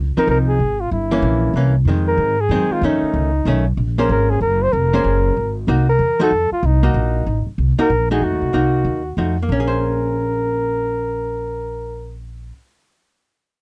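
Small-group swing and bop jazz in a swinging three-four, with a late-night mood, heard in a short fragment cut from a longer piece. A mellow flugelhorn carries the solo melody with scooped notes and a smooth top. A clean, compressed hollow-body archtop guitar picks the accompaniment, and a woody, thumpy upright bass on gut strings plucks the low line, all three sitting up front in a dry, close studio sound with a 1970s character.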